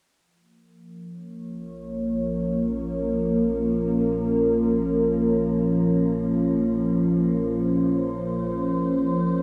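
Floating in free time, this expansive, hypnotic piece of ambient space music sits on a Bb minor chord, tuned to A4 = 435 Hz, and is cut from a longer piece. An up-front wavetable pad enters at 1.0 s with sustained, morphing chords of detuned triangle and sine tones, treated with chorus, shimmer reverb and a filter sweep. A mellow analog bass drone joins at 1.8 s and fades in, its sawtooth and pulse waves colored by ring modulation and chorus, while a wet spring reverb and cassette-tape grain surround the sound.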